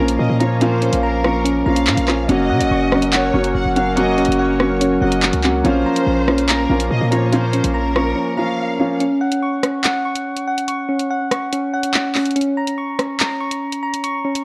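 Dark, mellow grand piano, a hollow, airy pad in the background, distant, lush bowed violins with vibrato and digital delay, soft, round electric-piano-like synth keys playing arpeggios up front, and a punchy, heavy 808-style bass open this cold, ominous half-time drill excerpt, with an electronic kit of bright hi-hats, handclaps and rim clicks joining at 0.1 s; the bass drops out at 8.1 s and the piano, pad and strings at 9.0 s, leaving the keys and drums in a break, all under worn, warbling cassette-tape pitch drift and light reverb.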